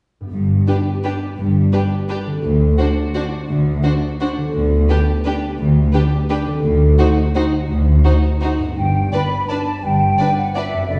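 A rich, close violin section carries the melody with vibrato and expressive portamento in this festive, sweeping orchestral ballroom waltz in G major, moving at 170 BPM in 3/4 with uneven, rubato beats. A soft-attack second violin line and smooth, even violas fill the accompaniment, while a ringing, thumb-plucked concert harp plays arpeggios over a lush bass of cellos and woody double basses. At 8.8 seconds, a pure, mellow flute section enters up front with a second line. The whole passage sits in the wet reverb of a recital hall and is cut from a longer piece.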